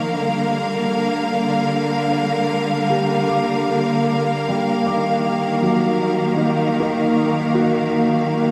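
A lush, up-front bowed string section holds sustained chords while a soft, muted felt piano fades in with mellow arpeggios and audible action noise through a delay, before a very quiet, detuned organ-like drone on Bb3 enters at 2.5 seconds in this weightless, peaceful ambient passage at 76 BPM in 3/4, moving from Gm7 to Ebmadd9 inside a huge, wet reverb with a 7.9-second decay.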